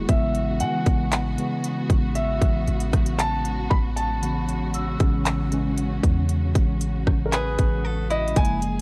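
A slow, straight trap groove of hard-clipped kick, crisp hats, handclaps and rim clicks sits up front in this romantic, smooth contemporary R&B excerpt, as a boomy sine-like 808 bass, a mellow tine electric piano and a distant, woody string section with sidechain pumping hold an Amaj9 chord beneath a warm grand piano melody, a delicate bell-like celesta with analog delay glimmers in the background, and a bright, clean picked electric guitar adds arpeggios from 7.3 seconds, all within a dry, gritty cassette-tape sound.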